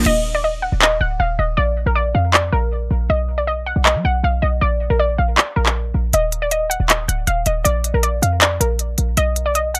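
A half-time 4/4 trap groove at 158 BPM drives this dark, menacing hip hop cut from a longer piece in Eb harmonic minor, where an up-front electronic trap kit with crisp hi-hats, handclaps and crash cymbal enters at 0.1 s beneath a punchy, tight, sine-based 808-style bass with a noise layer and a warbling, dusty lo-fi sawtooth pluck carrying the melody through chorus, a low-pass filter sweep and tape echo, all set in light reverb over chords moving from Ebmaj7(no3) to Bb5, B5 and Bb, dropping out at 6.1 s before Bb5 and B5 return.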